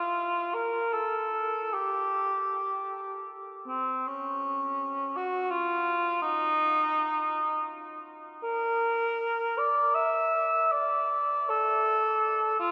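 A lone cor anglais opens the recording at 0.0 s and carries it through to 12.7 s, singing in free time with a meditative, lonely mood. This is a classical, expressive piece for the unaccompanied instrument, tuned to A4 = 435 Hz, and the line moves between C4 and E5. The tone is mellow, touched with a light vibrato, and the horn sits up front in the mix while still sounding somewhat distant. A wet cathedral reverb with a 6.2-second decay wraps the instrument in a vast, echoing space, giving each phrase a roomy halo. The passage is cut from a longer piece, so it feels like a fragment of a larger solitary meditation.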